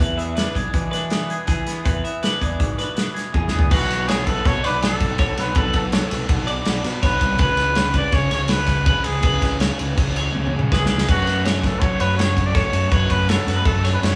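Bright and playful, this math rock and midwest emo excerpt moves at 163 BPM in an odd 5/4 metre with a straight feel. A loose indie drum kit sits up front with a punchy kick, dark cymbals and a rolled-off top, adding fills at 3.3 and 10.3 seconds, while a growly fuzz-driven fingered electric bass anchors the low end. A compressed twelve-string electric guitar spins sparkling arpeggios throughout, joined at first by a clean, twangy electric guitar playing accompaniment that drops out at 5.5 seconds. From 3.3 seconds a breathy, whispered trumpet carries the melody with soft attack, vibrato and an intimate, vintage tone, and shortly after a raw, lo-fi garage guitar enters in the background with a double-tracked overdriven riff. The band sounds live in one stone-walled room, and the chords move from E7 through Bm11 and C#m7 to F#m.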